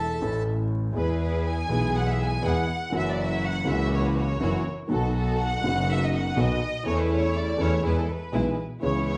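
A smooth, vibrato-laden violin section takes a solo from 1.0 seconds in this elegant, playful rubato tango excerpt at 122 BPM, carried by woody upright piano and a biting, nasal bowed double bass up front, with rich string stabs joining in the background at 0.9 seconds, all heard live in one room through a large reverb and vinyl crackle.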